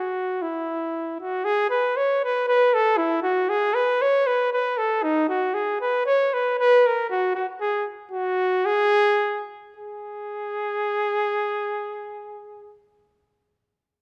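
Festive and jolly, this brief excerpt of alpine folk music moves in a straight 2/4 at roughly 103-118 BPM. A single flugelhorn carries the whole passage alone from 0.0 to 12.8 s, sitting up front with a warm tone, a light vibrato and a soft attack. Its playing follows a classical style, ranging from D#4 to C#5. The tempo slows between 7.6 and 9.8 s before the final stretch begins. A moderate recital hall reverb surrounds the horn, lending the performance an airy sense of space.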